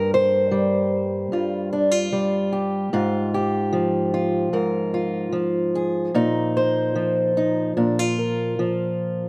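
Nostalgic and hopeful, this short folk excerpt at 74 BPM features a solo fingerpicked acoustic archtop guitar, captured up front with close, detailed microphones and light reverb, moving through Gmadd11, Fmadd9/Ab and Bbsus4 before settling on Bb at 7.8 seconds.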